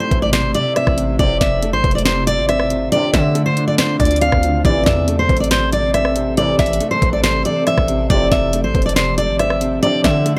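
A fingerpicked steel-string acoustic guitar carries the melody up front in this dark, menacing half-time trap excerpt, its full-bodied tone set against a felt-muted upright piano with audible action noise and a very quiet, blurred granular cloud pad holding sustained chords. A distorted, saturated 808-style bass and a trap kit with knocking kick, sharp snare, rim click and bright hats drive the groove from 0.1 seconds, while a clear brass ensemble adds soft-attack stabs in the background from 1.2 seconds. The excerpt has a dry, gritty hardware character in a small room, cycling through Am, F and Dm7.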